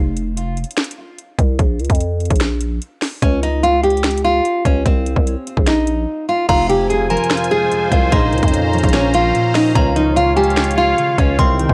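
A dry, gritty cassette-tape sound with digital ambience frames this hard-hitting, eerie trap excerpt in F minor at 147 BPM with a half-time feel, built on a growling, buzzy 808-style bass and an up-front electronic drum kit whose hard-clipped kick, sharp snare, metallic hi-hats, finger snaps and crash carry a vintage 12-bit sampler grit. At 3.2 seconds a bright, fingerpicked classical nylon-string guitar takes the melody through an analog delay, finger squeaks audible. From 6.5 seconds a thumb-plucked concert harp adds ringing accompaniment, an evolving, airy sawtooth pad with chorus sustains chords, and a delicate, tinkling FM tine bell sits in the background with chorus and delay.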